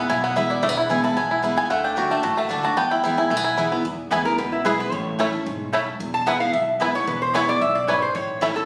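Bluegrass at a driving, virtuosic 224 BPM in E mixolydian, this short excerpt opens with a mellow, woody mandolin solo over a twangy, up-front banjo melody, bright dreadnought guitar accompaniment with audible finger squeak, and a thumpy gut-string upright bass. The solo passes to a nasal, metallic lap resonator guitar played with a steel bar at 3.9 seconds, though the instrument itself enters up front at about 4.3 seconds, as the chords move from E through D and A. The sound has a roomy, phone-captured quality with moderate studio reverb and compression.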